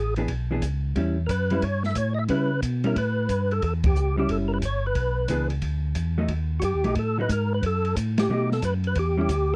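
A dry, close recording in a 1970s studio style, with very little reverb, captures a swinging, bluesy soul jazz organ trio at a brisk 180 BPM in 4/4 with a moderate swing on the eighths. A fat, lightly overdriven tonewheel organ carries the melody between F#4 and E5, its third-harmonic percussion and key click riding a slow rotary speaker and chorus vibrato. Underneath, a second, mellow and round tonewheel organ supplies the bass line from F#1 to C#3, also with chorus vibrato and slow rotary. A clean, compressed hollow-body electric guitar adds picked accompaniment, and an acoustic jazz kit heard in a small room brings a boomy kick, a medium-tuned snare, hi-hat and dark ride cymbals. The blues changes move through E7, A7 and B7, the band hits accents together at 3.8 and 8.1 seconds, and the cut ends on a rootless A7.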